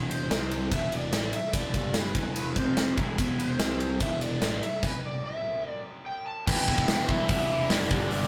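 A rough rehearsal-room recording with tube saturation and moderate small-room reverb carries this aggressive, heavy hard rock excerpt in E minor at 146 BPM, where a crunchy, phased, double-tracked guitar riff and a growly fuzz-picked bass sit in the background beneath an overdriven lead guitar through a small cranked amp and an up-front big rock drum kit with a punchy kick and bright cymbals; after a stop from 4.8 to 6.5 seconds, a bright, phased semi-hollow guitar joins with its own overdriven riff on an E minor chord.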